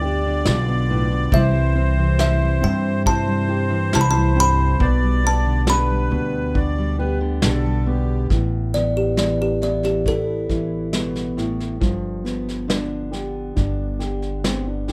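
A bright, ringing kalimba carries the melody in this intimate, melancholic acoustic folk excerpt, with a sweet, reedy accordion second line until 8.3 s, fingerpicked steel-string guitar, mellow upright piano arpeggios, woody pizzicato upright bass and a distant brushed drum kit entering at 0.5 s, all in light reverb, before the kalimba takes a solo from 8.3 s and falls away at 12.7 s.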